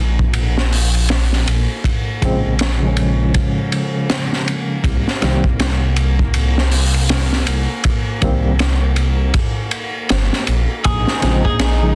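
A dense, heavily limited modern master with studio reverb frames this brooding, hypnotic trip hop excerpt at 80 BPM in C phrygian, where a deep, rumbling detuned saw bass sits up front beside a crunchy, saturated breakbeat kit with a punchy kick, high-tuned snare and dark cymbals, all swung on the 16ths, while a tense, string-like drone hovers in the background. From 2.2 seconds a bright tine electric piano adds chords colored by tremolo, tape echo and 12-bit sampler grit, moving from Bbm7 to C7(no3) and back. At 10.8 seconds a clean, picked twelve-string electric guitar and a lush symphonic string section with a soft attack and vibrato join for the closing moment.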